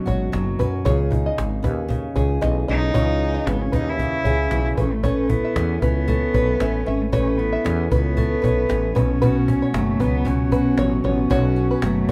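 A dark, bowed cello with vibrato and a soft attack carries the melody in this heartfelt, sunny acoustic pop clip at 115 BPM in 4/4, with a light swing on the 16ths over chords moving from Badd9 through C#madd9 and Aadd9 to Bsus2. A fingerpicked steel-string guitar with fresh strings sits up front beside a growly, round fretless electric bass, while a mellow open-back banjo adds plunky, twangy arpeggios and a cajon played with soft hands supplies a woody pulse with faint snares. The band sounds like it is playing live in one room with light reverb. The cello and guitar open this 12.1-second section cut from a longer piece, and the banjo, bass and cajon join a split second later.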